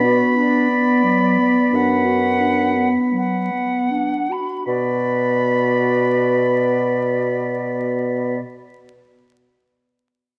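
Elegiac and yearning, this rubato fragment of a slow romantic wind-quintet movement eases back over its first 4.7 seconds as a pure, distant silver flute sings the melody with vibrato above a close, warm oboe second line, a smooth, soft-attack clarinet and a close-miked French horn in accompaniment, and an up-front mellow bassoon bass, the whole blend set in a wet recital-hall reverb with a dark production and vinyl crackle.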